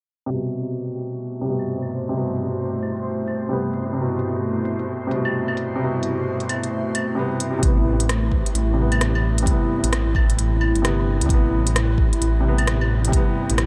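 Wistful and ghostly, this future garage excerpt at 131 BPM in A minor swings its 16ths beneath a dark, woody upright piano with audible action noise, 12-bit sampler grit, tape echo and filter sweeps, a warbling, nostalgic pad with chorus and phaser, a reversed granular texture swelling in the background, and a filtered organic electronic kit of claves, smooth hi-hats and rim clicks, until a rumbling detuned saw bass and a deep, tape-warm kick arrive at 7.6 s, with piano, pad and bass all sidechain-pumping and the whole mix soaked in a huge, dreamy reverb.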